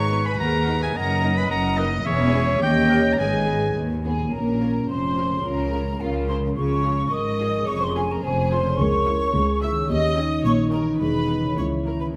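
Cinematic, whimsical film cue with a sneaky, magical air, cut from a longer piece, in which a muted, veiled violin section carries the melody over a second violin line, con sordino violas in the background, close cellos and soft-attack double basses, while a hollow, airy flute group, ringing fingerpicked harp arpeggios and tight, dark French horn chords continue throughout, and a clear, up-front oboe and a warm clarinet add second lines until 3.8 and 4.0 seconds, in a moderate scoring-stage reverb.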